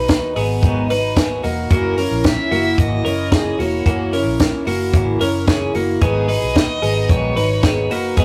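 Twelve-string electric guitar arpeggios ring out up front, bright, twangy and compressed, over a shimmering, octave-doubled picked twelve-string acoustic guitar with audible finger squeak, in this wistful, restless jangly indie pop cut from a longer piece, moving at 112 BPM in G# minor between G#m7 and F#7. A compact cocktail drum kit sits dry and punchy with a high-tuned snare, while a vintage foam-muted fingered electric bass adds a dark, round low end. From 1.7 seconds a warm, distant, smooth bowed violin carries the melody with vibrato, all set in a rough rehearsal-room sound with tube saturation and moderate reverb.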